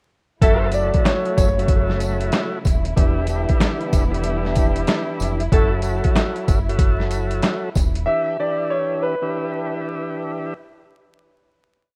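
A laid-back, swung boom-bap beat from a gritty, compressed sampler-style drum kit, with a thumpy kick and sixteenth-note hats, anchors this reflective, dark hip-hop piece. A round, deep dub fingered bass line with chromatic approach notes and faint off-beat tambourine run alongside it until the rhythm section drops out near 8.1 seconds. Above, a lightly overdriven tonewheel organ with a slow rotary speaker and cassette tape colour chops thick chords, and bowed studio strings hold a vibrato-laden pad in the background, while a tight horn section plays short delayed stabs at 0.4 and 5.5 seconds and a bright, woody upright piano loops a brief melody at the start and again at the close, the whole piece sitting in a rough home-demo mix with small room ambience and vinyl crackle.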